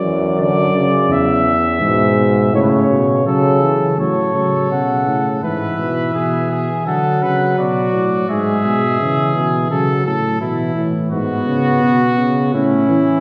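A steady, straight 4/4 pulse at 84 BPM drives this lively, joyful fragment of a classical imitative canzona for brass ensemble. A mellow cornet carries the melody up front until 9.7 seconds, while a close-miked, warm trombone accompanies and a smooth-topped bass trombone with light vibrato anchors the bass. A clear trumpet enters at 4.0 seconds with a second line, and the ensemble sits further back in a wet concert hall, its chords opening on D/F#, E and A and passing through F#m/A, E/G#, D and G#m7 before settling on A.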